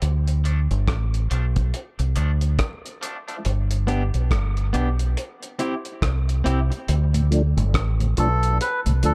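A swung 16th-note groove at 70 BPM in 4/4 carries this spacious, meditative dub reggae excerpt in D dorian, where a cloth-damped, thuddy drum kit with tight kick, hi-hat and rim click sits under a deep, round fingered electric bass up front, a slightly broken-up, twangy picked electric guitar with dub echo enters at 0.4 s over a Dm, G, C progression, a mellow tonewheel organ with chorus vibrato, slow rotary speaker and dub echo arrives at 7.1 s just after the chords return to Dm, and a reedy, breathy melodica with dub echo takes the melody at 8.2 s, all within a dark small-room production.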